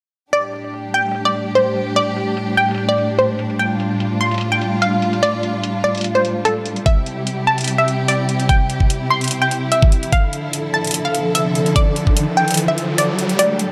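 A punchy, detuned sawtooth pluck carries the melody in this heavy, aggressive wobble dubstep excerpt, its fast attack and short decay trailing dub echo while a noise layer and moving notch add grit to the up-front line between A4 and C6. Underneath, a lush symphonic string section holds sustained bowed chords from A2 to A4, soft-attacked and expressive with vibrato, pumped by sidechain compression as the harmony moves from Gsus2 to C to Dmadd9. The tempo sits at 147 BPM in 4/4 with a half-time feel, and metallic, tape-warm electronic hi-hats run throughout under a low-pass filter, with a filter sweep on the drums. A knocking, layered electronic kick drum sits up front from 6.9 to 12.1 seconds. An electronic riser builds from 10.9 seconds toward the close, and light reverb sits over the whole mix.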